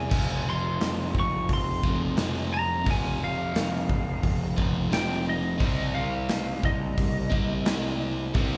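Aggressive and driving, this short hard rock cut at 88 BPM pairs a twangy, slightly broken-up lead guitar melody with two picked, overdriven semi-hollow guitars playing a riff (one sitting very quiet), a growly, fuzz-laden picked bass and a big, dark rock drum kit with a punchy kick up front, all captured as a band playing live in one room with light reverb as the harmony moves from F5 to Cm at 5.6 seconds.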